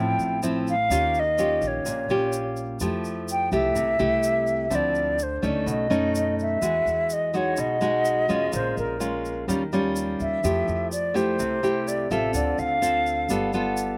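A straight 4/4 bossa nova groove at 126 BPM sets a breezy, relaxed mood in this short excerpt cut from a longer piece, with a woody, dark pizzicato upright bass sitting low in the mix and a grainy, mellow tube shaker entering at 0.2 seconds. Up front, a full-bodied, fingerpicked nylon-string guitar with fresh strings moves through rich jazz harmony such as Dm9, Fmaj9, Emaj9 and A#m7, while an airy, hollow concert flute carries the melody with vibrato, a crisp attack and a slapback echo until 13.5 seconds. The dry sound, recorded outdoors with little reverb, keeps every part close, with the tune shifting into a new section at 6.6 seconds.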